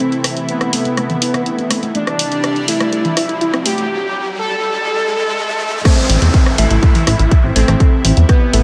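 An 8.6-second slice of driving, cinematic melodic techno in A minor at 123 BPM opens with bold, brassy analog synth brass carrying the melody over a lush unison pad, a warbly, lo-fi pluck arpeggio, and a punchy analog drum machine of crash, hi-hat and rim click recorded in a large room, with filter sweeps and a riser from 1.2 s building over Am and Cadd9 until the drop at 5.9 s brings in an up-front layered kick and an eerie, inharmonic FM bell line in the background, followed at 6.1 s by a funky plucky analog bass, with the bell and bass pumping against the kick.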